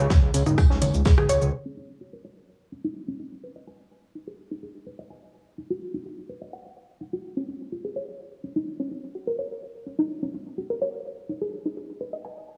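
Melodic techno with a cinematic, melancholic mood, cut from a longer piece in a straight 4/4 metre. It opens with a brief burst in which a fat, detuned analog bass with sidechain pumping, a punchy, up-front electronic kick and a compact cocktail drum kit, all dry and natural with a high-tuned snare, hats and tambourine, sound together before dropping out by 1.5 seconds. A house drum kit with metallic hats, congas, rim click and shaker carries on through the rest of the passage. Above it, a warbling, dusty, wave-folded pluck plays dark arpeggios through chorus, tape echo and sidechain pumping, and from 1.5 seconds a filter sweep reshapes its tone. The harmony moves through shifting minor and suspended chords, and the whole recording has a gritty, lo-fi cassette character with a moderate digital room reverb.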